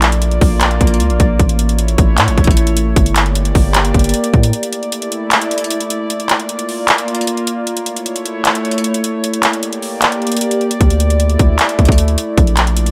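Lightly reverberant and up front, this brooding, hard-hitting trap excerpt sets a warbling, detuned, lo-fi tape-like pad with chorus, sustaining nostalgic chords over a half-time electronic drum kit of hard-clipped kick, metallic hi-hats and handclaps, while a deep, sine-toned 808-style bass holds long decaying notes until it drops out at 4.5 seconds and returns at 10.8 seconds.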